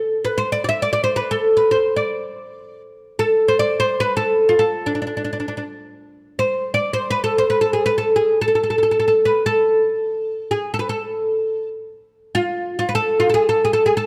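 Close, detailed microphones capture this short cut from a longer piece, set in a moderate scoring-stage reverb that lends the notes a soft halo. A lone oud carries the whole performance, entering at 0.2 seconds and playing solo through to 14.1 seconds in free, unmetred time, tuned to A4 = 441 Hz. The instrument sits up front, its fretless, double-strung, plectrum-plucked tone sounding woody and deep as the line moves between D4 and E5. The music unfolds as a Turkish makam ensemble passage heard through this single voice, with a first phrase giving way to a restatement of the same material at 6.1 seconds. The mood is hypnotic and soulful, drawing the listener into an inward reverie.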